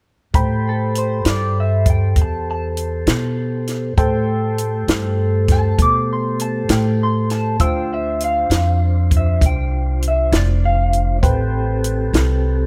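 A brooding, mournful slow blues in A minor at 66 BPM in 12/8 opens with a clear, slightly detuned upright piano, a soft tonewheel organ holding flute-like chords through a slow rotary speaker, a woody, thumpy pizzicato upright bass and a dry compact cocktail kit with a high-tuned snare and punchy kick, the bass and drums sitting up front. At 0.7 seconds an electric guitar through a small old amp takes the melody, its picked, slightly broken-up lo-fi tone coloured by analog chorus, while the harmony moves from Am9 to Dm9 at 7.6 seconds and back to Am9 at 11.2 seconds. The sound carries little reverb, and this short cut from a longer piece closes at 12.7 seconds.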